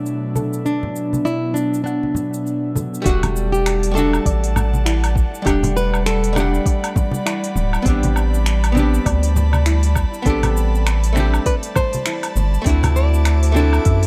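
Swung sixteenths at 100 BPM in 4/4 drive this smooth sunset chillout excerpt in E minor, where a deep house kit of cabasa, finger snaps, woodblock and silky hi-hat is joined by bright, close congas, and a hollow-body archtop guitar, dark and clean with tape echo, carries a filter sweep over a breathy, chorused pad while a glassy harmonics texture drifts in the background until 3.1 seconds. At that point an overdriven electronic kick and a deep, nasal analog bass sitting up front arrive as the chords move from Bm7 to Em11, Am11 and D9. Throughout, a fingerpicked nylon-string guitar sings the melody through digital delay, and a soft, gentle pluck with subtle chorus and tape echo arpeggiates quietly in the background, all in a dry, close sound.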